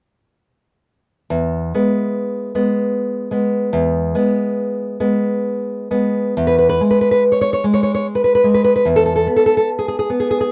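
Moving in a flexible, rubato 3/4 that drifts between 62 and 77 BPM, this short cut from a longer romantic piece for solo classical guitar unfolds with a tender, nostalgic mood. A single nylon-string guitar, fingerpicked and placed up front, carries the whole performance from 1.3 to 10.5 seconds, ranging from E2 up to C#5. Its tone is acoustic and warm, with the intimacy of a small, wet booth ambience surrounding the notes. The music rests in E major, opening on an E chord before shifting into a new section at 6.4 seconds, where an Eadd11 colours the harmony at 8.9 seconds. The result is a gentle, reflective miniature that feels like a fleeting memory.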